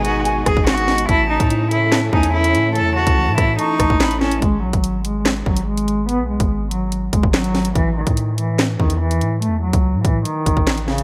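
This tense, cold drill cut runs at 144 BPM in 4/4 with a half-time feel, driven by an up-front electronic drum kit of hard-clipped kick, sharp snare, bright hi-hats, handclaps and rim clicks, with a tape-warm edge and gated reverb. Beneath it, a deep, sine-like 808-style bass with a fast attack holds long, decaying notes for the full 11.0 seconds. A rich, nasal cello carries the melody up front, its reedy, boxy gut-string tone and airy bowing shaded by a low-pass filter and delay. For the opening 4.4 seconds, over G#m and A chords, a mellow tine electric piano with ensemble chorus plays accompaniment, a silver concert flute adds a soft, vibrato-laden second line with delay in the background, and a lush symphonic string section sustains expressive chords with portamento further back. After 4.4 seconds the harmony drops away and only the cello, bass and drums continue, settling on an A5 chord at 7.8 seconds, all framed by light small-room ambience and bright 1980s-style digital production in a clip taken from a longer piece.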